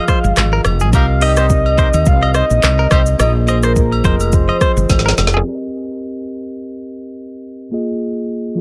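A soft, octave-layered synth lead with chorus and delay carries the melody over a woody fretless bass, deep-kicked afro-pop drums, bell-like tine electric piano, twangy clean guitar riff, background agogo bells and a brief punchy horn line in this smooth, sultry C minor afrobeats excerpt at 106 BPM, where a drum fill at 4.9 seconds hands off to a filter sweep with the electric piano playing alone from 5.5 to 8.6 seconds.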